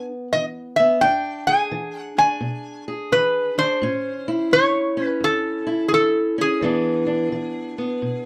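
Blues with a rollicking, swaggering swing, heard in a short cut from a longer piece that moves from E7 to A and back to E7. A metal-body resonator slide guitar carries the melody with fingerpicks, its tone metallic and nasal, sitting up front over a dark, boxy fingerpicked parlour steel-string acoustic guitar that supplies the accompaniment. Close, detailed microphones and light reverb keep both guitars intimate and present throughout the 8.3 seconds.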